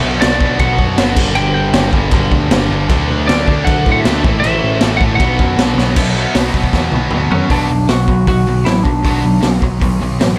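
A straight, hard-driving 4/4 beat from a raw garage drum kit, gritty and pumping in a small room and sitting up front, powers this aggressive, angry punk rock excerpt cut from a longer piece, with drum fills at 5.8 seconds and again from 6.7 to 7.5 seconds. A punchy, growling picked bass with overdrive anchors the riffing of a compressed distorted guitar and a bright overdriven guitar, both set back in the mix, while a very quiet, double-tracked fuzz guitar thickens the riff until 6.0 seconds. Over the top, a twangy, slightly broken-up lead guitar carries the melody, and the dry sound keeps the whole attack close and unpolished.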